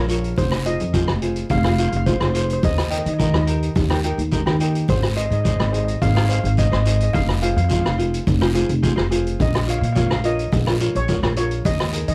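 Fingerpicked tenor ukulele and a woody, pizzicato upright bass with steel strings open this carefree, festive calypso excerpt together from the start, the bass sitting up front and the ukulele light and acoustic. A moment later an acoustic street-band drum kit joins with hi-hat, rim click and a boomy kick, its rolled-off top and cassette-tape grain giving it a warm, mid-forward character, alongside a raspy guiro that stays low in the mix. From 0.4 seconds a lead steel pan carries the melody, played with hard rubber sticks, close-miked and dry, its tone metallic, shimmering and full, and it also carries a cassette-tape color. The tune moves at 106 BPM in straight 4/4 over a chord sequence of Fm, Eb, Ab, Fm and Bbm. The whole piece is a home cassette recording with moderate booth ambience, and this short cut comes from a longer piece.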